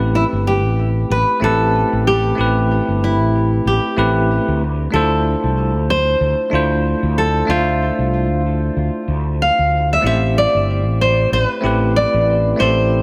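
A fingerpicked nylon-string guitar carries the full-bodied, fresh-stringed melody of this relaxed sunset chillout piece in A minor at 94 BPM with a swung sixteenth feel, its tape echo shared by a clean, bell-like tine electric piano accompanying underneath, while a growly, amped fretless electric bass sits up front and the harmony moves from Am9 to Dm9 at 4.6 seconds and back at 10.0 seconds inside a light studio reverb.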